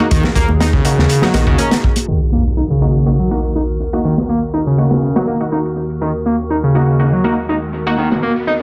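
A crunchy breakbeat kit with a punchy kick and high-tuned snare drives a straight, funky, swaggering breaks groove that sounds dark and gritty with a rolled-off top, while close, ringing congas sit in the background at the opening. Up front, a screaming, guitar-like overdriven lead plays a riff through tape echo, over a thick, menacing detuned saw bass that drops out at 1.6 seconds. A warbly, lo-fi tape-like pad holds nostalgic sustained chords with chorus, sampler grit and sidechain pumping; bold orchestra-hit-like stabs punctuate the dense, heavily limited mix; and an electronic impact and riser arrive at 2.1 seconds as a filter sweep begins on the lead.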